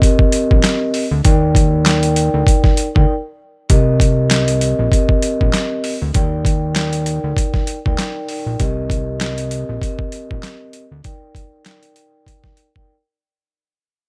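Overdriven, compressed sampler drums sit up front in a digital ambience, with a thumpy kick, medium-tuned snare, hi-hat and handclaps, all pitched down and gritty, driving a reflective boom-bap hip-hop groove at 98 BPM in C minor with a light 16th-note swing. A mellow soft-mallet vibraphone with its motor off rings out metallic Cm7 and Ebmaj7 chords through a cassette-tape texture. A fat, detuned analog bass of sawtooth and square waves enters at 0.5 s with a saturated filter pluck and sustained notes, stopping at 11.0 s as the excerpt breaks, while the fade-out that began at 3.7 s continues through to 13.5 s.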